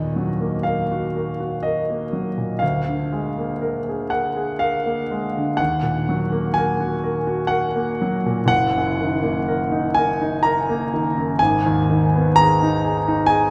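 Moving in a slow, pliant 3/4 at 62 BPM with generous rubato, this short fragment of a romantic nocturne for solo piano unfolds in E-flat minor with a yearning, melancholic air. The grand piano carries the whole 13.5 seconds on its own, ranging from a deep Gb1 up to Bb5. Its tone is clear and polished, placed up front and intimate enough that the clatter of the key action comes through. Around that close sound, a cathedral reverb lingering about 5.5 seconds fills a vast, echoing space. The harmony drifts from Ebm through Bb7/D, back to Ebm, then to Ebm/Gb before settling on Abm at 11.4 seconds.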